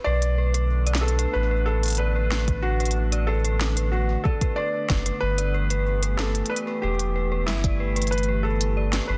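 A round, deep sine sub bass sits up front in this melancholic, eerie IDM excerpt at 93 BPM in B minor, under a soft, felt-muted upright piano melody with digital delay and an inharmonic, detuned synth bell playing arpeggios through chorus, tremolo and delay. A glassy, ethereal FM pad holds sustained chords with ensemble chorus, its own reverb and sidechain pumping, moving from Bm7 to G69 at 5.2 seconds. An up-front electronic kit with a woody snare and crisp hats carries the groove, joined by a soft, tape-toned kick from 2.5 to 7.8 seconds, all inside light digital ambience and a dense, heavily limited master.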